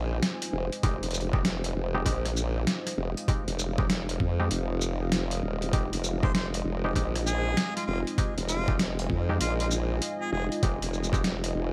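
Glitch hop with a funky, swaggering swing, built on an up-front, chorused wobble bass growling with overdrive and formant sweeps beneath a gritty, pitched-down boom bap kit and a thumpy electronic kick, while muted, stringy clav stabs with 12-bit grit and digital delay pump against a dark, detuned analog pad and a mellow ambient pad in the background, and a smooth, lightly vibratoed harmonica takes a brief solo from 6.2 to 10.4 seconds over a single Fm7 chord in this excerpt from a longer piece.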